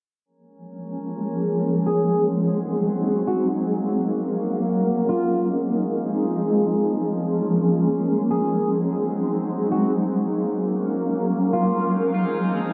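A filter sweep opens this dreamy, floating free-time hip hop excerpt at 0.3 s, followed at 0.7 s by a glassy, drifting texture of sine overtones with chorus sitting in the background, then a bright, cloudy granular pad up front holding slow-attack chords around Bbm7, Ab7, Gbmaj7 and Fm7, while a twangy, slightly broken-up electric guitar with lush chorus, delay and a low-pass filter plays a fingered melody in two phrases starting at 1.9 s, all wrapped in a dark production and a huge ambient reverb.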